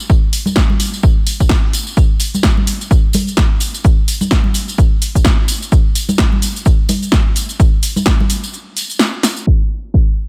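Bright, close tambourine and congas open this bittersweet, energetic house excerpt at 128 BPM with a swung sixteenth-note feel, joined at once by an up-front, tape-warm layered electronic kick and an overdriven analog drum machine supplying a punchy snare, crash cymbal, hi-hat and shaker, all in a dry, low-pass-filtered mix that drops into a break at 8.5 seconds with a drum fill at 9.2 seconds.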